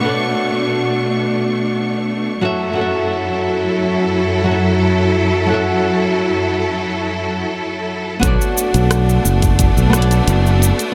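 Lush, clear bowed strings sit up front with vibrato, holding sustained Bm9 and F#m7 chords across this smooth, wistful sunset chillout piece in B minor at 88 BPM, while a dark, fingerpicked flamenco guitar adds delayed accompaniment. After a break at 6.9 seconds, a bright, growly fingered electric bass with tube saturation arrives at 8.2 seconds alongside a punchy electronic kick and a layered deep house kit of cabasa, hi-hat and rim click. The whole mix is dreamy and soaked in a huge ambient reverb.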